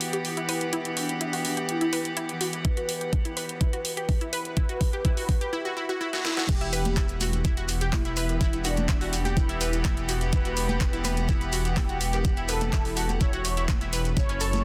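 Light reverb and a dense, heavily limited modern master give this driving, dreamy progressive house excerpt a polished sheen, moving at 125 BPM in a straight 4/4 in E dorian over an Emadd9 chord. Distant, reedy chamber strings with a gut-string tone and light vibrato hold sustained chords, while a dark, rumbling detuned saw bass sits beneath with sidechain pumping. A bright, round analog pluck with chorus and delay spins arpeggios, and a smooth, expressive synth lead with ensemble chorus, vibrato and a soft attack carries the melody, both under filter sweeps through the opening build-up. A pop drum kit with a deep, overdriven snare, handclaps, hi-hat and crash plays fills, and an up-front, knocking electronic kick arrives at 2.6 seconds. The drop lands at 6.5 seconds, where a grainy, mellow shekere joins in the background, followed at 6.9 seconds by congas and cowbell played with soft hands.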